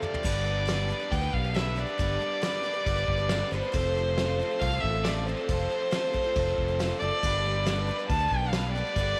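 This folk rock and heartland rock excerpt opens on a brushed drum fill, the kit sounding natural in a studio room with a punchy kick, fat snare and dark cymbals. A fingered electric bass joins at 0.2 seconds, sitting up front with a warm tone, as the band settles into a straight 138 BPM groove in 4/4 with an open-road mood. Carrying the melody is a single bowed fiddle, woody and dark with light vibrato and tape echo, heard up front yet with a distant quality. Beneath it, a double-tracked overdriven electric guitar plays a riff, while a picked twelve-string acoustic adds shimmering, octave-doubled accompaniment in the background. A piping tonewheel organ, clean with key click and a rotary speaker, holds very quiet sustained chords. The harmony in G mixolydian moves from G to F at 3.7 seconds and back to G at 7.2 seconds, all framed by light reverb and small room ambience.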